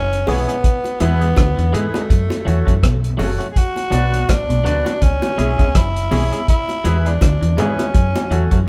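Meditative and laid-back, this short roots reggae excerpt pairs a raspy, growling tenor saxophone melody with a thuddy, cloth-damped drum kit of hi-hat, kick and rim click, and a deep, round fingered bass sitting up front. In the background, a picked semi-hollow electric guitar riff carries tape echo, while a twangy, compressed clean electric guitar, clear baby grand piano stabs with audible action noise, and low-tuned bongos fill out the groove. The band plays live in one room, and a moderate large studio reverb gives the swung sixteenths a relaxed, natural space.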